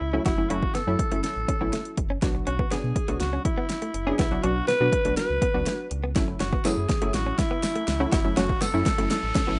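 A straight 4/4 dance-pop groove at 122 BPM in F# minor drives this confident build-up, with an overdriven, up-front deep house drum kit with punchy kick and fat snare, a deep sub bass with octave and sidechain pumping, detuned sawtooth chord stabs with chorus and pumping, a clean direct-recorded electric guitar riff with lush chorus, and a raspy, gritty alto saxophone melody with vibrato and digital delay over F#m7 and Bm, while a jingly tambourine sits in the background from 6.6 seconds and a very quiet riser enters at 7.8 seconds in this rough home-demo mix with light reverb.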